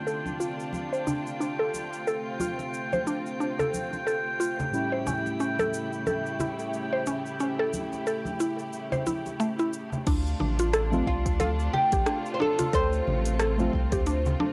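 A plectrum-plucked oud with a woody, double-string tone surfaces at 11.1 seconds over a mystical organic downtempo groove at 90 BPM. In that groove a mallet-like synth pluck arpeggiates beside muted felt-like synth keys, rich bowed strings, drifting glass harmonics, crisp overdriven electronic drums and soft-handed congas, moving from Dm7 to A7. A round sub bass and deep kick join at 10.1 seconds as the harmony returns to Dm7, with cassette-tape grain on most parts.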